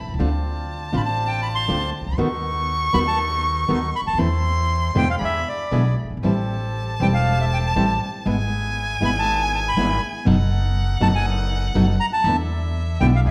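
Set in a moderate recital-hall reverb, this melancholic, dramatic tango excerpt moves with a rubato feel as a smooth, dark bandoneon carries the melody from 1.0 seconds over reedy bandoneon stabs, a fingerpicked classical nylon-string guitar, a thumpy, up-front pizzicato upright bass on woody gut strings, and a bowed violin second line full of vibrato and portamento with a soft attack.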